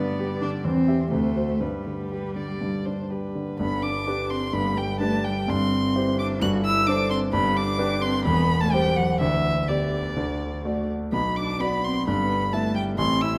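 A focused, vibrato-laden violin carries the melody up front in this cheerful, lively passage cut from a quick classical-period movement for piano trio. The movement sits in G major and 4/4 at roughly 118-133 BPM, with a rubato feel that lets the pulse breathe. Beneath the bowed violin line with its smooth top, a single cello plays a close, expressive second line, its soft attack, vibrato and portamento giving the lower voice a singing, warm quality. The concert grand piano supplies a clear, natural accompaniment up front with deep bass, moving through progressions such as G, C/E and D7 before the music shifts into a new section at 3.6 s that wanders through Bm and Em/G. The trio is heard in a wet recital hall whose reverb lingers for about 1.7 s.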